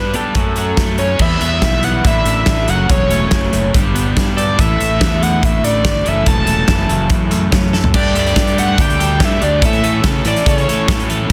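A straight, driving 4/4 pulse comes from a big, punchy acoustic rock kit set up front in a studio room, with a medium-tuned snare, kick, hi-hat, toms and crash cymbal. This cool, moody indie rock clip is cut from a longer piece. A screaming, guitar-like synth lead carries the melody, its sawtooth and square-wave tone gritty and saturated, with vibrato, a filter sweep, slapback echo and plate reverb. Underneath, a biting overdriven guitar plays a riff with subtle chorus and slapback echo, while a clean, compressed twelve-string electric guitar picks its own riff in the background. A fuzzed, growly fingered bass with overdrive anchors the low end, moving through chords such as F#m, Em, Asus4 and Gadd9. A drum fill at 7.7 seconds leads into a new section at 7.9 seconds that shifts to Gsus2 and A, all inside a dense, heavily limited modern mix with light reverb.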